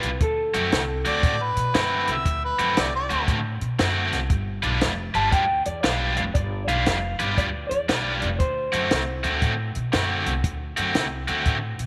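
A bright, overdriven stack guitar drives the riff up front with spring reverb through this gritty, laid-back electric blues shuffle in D mixolydian at 117 BPM, moving from D7 to G7 and back. An upright bass plays woody pizzicato lines on steel strings, and a compact cocktail kit with a high-tuned snare and tight kick keeps a dry, natural swing. An up-front harmonica with light vibrato and slapback echo takes a smooth solo phrase from 1.1 to 3.2 seconds, and a twangy, slightly broken-up guitar through a small old amp carries the melody, returning at 5.2 seconds, all in a small room with light reverb in this excerpt from a longer piece.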